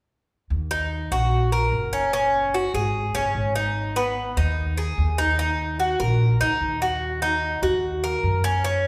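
A reverberant recital-hall ambience surrounds this short latin fragment, cut from a longer piece and recorded in what sounds like a church or concert hall. It draws on Cuban son and guajira in a straight 4/4, with a danceable yet nostalgic mood. The upright bass enters at 0.5 seconds, its pizzicato steel strings giving a woody, thumpy low end. At 0.7 seconds the Cuban tres joins, placed up front and playing picked arpeggios whose doubled strings, some in octaves, ring bright and metallic. Both parts carry through a single section over a short progression of four chords until the fragment ends at 8.9 seconds.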